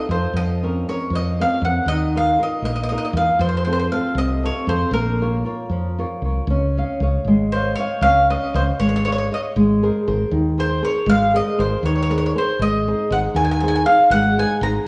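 Italian folk serenade in a lilting 6/8 at 79 BPM, wistful and passionate, shifting from B-flat harmonic minor to a brighter D-flat major at 6.5 seconds in this fragment of a longer piece. A bright, picked bowl-back mandolin carries the melody on its doubled strings, while a fingerpicked flamenco guitar with fresh strings and audible finger squeak supplies the accompaniment, and a round, punchy fretless electric bass with a woody, hollow-body tone anchors the low end, all three sitting up front. The whole recording has the worn, warbling pitch drift of old cassette tape, set in the lingering wet reverb of a recital hall.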